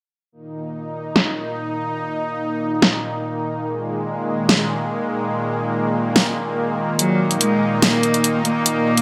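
Heavy wobble dubstep at 144 BPM in 4/4 with a half-time feel, tuned to A4 = 441 Hz, this menacing passage is cut from a longer piece. A lush, detuned supersaw pad sits up front from 0.3 seconds, holding sustained sawtooth chords on Eb5 with a slow attack and long release that keep the sound evolving. At 1.2 seconds a layered electronic drum kit joins, also up front, with hi-hat and a huge snare that sounds re-recorded in a small room, all run through low-pass filtering and a filter sweep. From 7.0 seconds a single bowed cello carries the melody in a narrow low register, its focused, vibrato-rich tone given a smooth top and trailed by digital delay. Light reverb and digital ambience wrap the mix.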